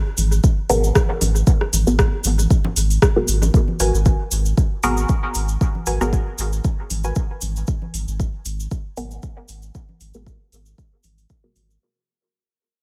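A digital ambience wraps this nocturnal, hypnotic dub techno excerpt in G# minor at 116 BPM, where a muted, detuned chord stab on G#m9 drifts through phaser, cassette tape and dub echo under a filter sweep, over a round sine sub bass pumping to the sidechain and an up-front, tape-warm electronic kick. A soft vintage rhythm box adds metallic hats and rim clicks with dub echo, a grainy, bright cabasa sits alongside background congas, and the 16ths carry a slight swing. A second filtered stab plays a chorused riff from 3.8 to 7.1 seconds, and a fade-out runs from 3.5 seconds to the end.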